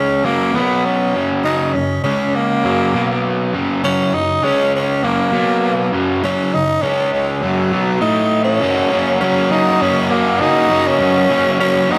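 Rock with a sunny, swaggering mood, this fragment of a longer piece sets a raspy, gritty tenor saxophone solo up front, singing the melody with vibrato and scooped notes in a close, pop-style tone. Alongside it, a crunchy, double-tracked electric guitar picks an overdriven riff through slapback echo across the full 12.0 seconds, both parts sitting in a big arena sound drenched in concert hall reverb. At 8.6 seconds the music moves into a new section as the key shifts from F# mixolydian to F# major.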